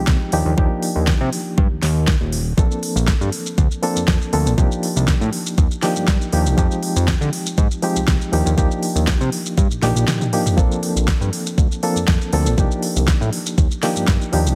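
Nu-disco with a sunny, groovy feel, built on a knocking electronic kick and a pop drum kit with a fat snare and crisp hats, a thick sawtooth analog bass, and a barky, reedy electric piano laying down extended chords through overdrive, fast tremolo, sidechain pumping and dub echo, all heavily compressed for a dry, radio-ready sound with a drum fill at 9.8 seconds.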